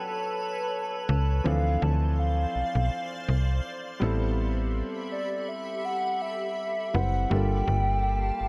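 A snappy, metallic FM bass with a slap-like attack sits up front in this late-night contemporary R&B fragment, entering at 1.1 s and decaying after each note. Above it, a hollow, woody synth lead carries the melody in a soft, mellow tone, shaded by vibrato, chorus and a digital delay. A grand piano plays intimate accompaniment, its natural sound carrying audible action noise. A granular pad fills the background with cloudy, blurred, bright sustained chords that evolve over time, bathed in its own built-in reverb. The harmony drifts through lush minor ninth chords over a lightly swung groove, and the whole passage, cut from a longer piece, sits in a digital ambience with a longing mood.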